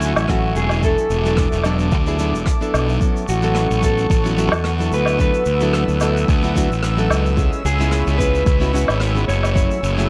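Relaxed and warm, this sunset chillout excerpt drifts on a lightly swung groove. A dark, clean electric guitar carries the melody through spring reverb and tape echo, over fingerpicked classical nylon-string guitar, a soft, breathy, chorused pad, and an up-front, fuzz-overdriven fingered bass. Shaker, woodblock and rim click played with brushes sit in a small room, while a deep, layered electronic kick runs from 0.3 to 9.7 seconds and the harmony settles onto A6 at 3.0 seconds in a dark production.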